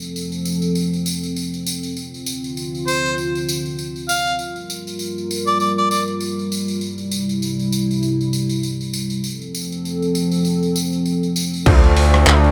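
Light reverb frames this funky, playful glitch hop excerpt, which opens on a deep, moody analog pad whose detuned, chorused chords pump under a filter sweep while a jingly tambourine shimmers alongside and a bright harmonica with light vibrato sings a short, tape-echoed melody from 2.9 to 6.0 seconds. The harmony moves from F through Dm7, Gm7 and C back to F over a swung sixteenth-note feel. At 11.7 seconds the full groove drops in: a punchy electronic kick, a gritty, overdriven sampler-style kit with crash, handclaps, hi-hat and rim click, an aggressive, saturated synth bass on D, and worn, slightly out-of-tune electric piano stabs with tape echo.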